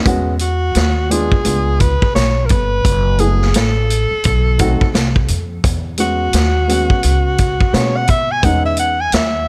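A breathy alto saxophone with subtone, vibrato and scooped notes carries a cool, smooth jazz-hop melody in E major at 86 BPM with a swung feel, over a woody pizzicato upright bass, a dark, mellow upright piano with short sustain and a punchy vintage drum kit with a rolled-off top, set in small room ambience as the chords move from E69 through C#7b9, F#m11 and B7b9 back to E69 in this short cut from a longer piece.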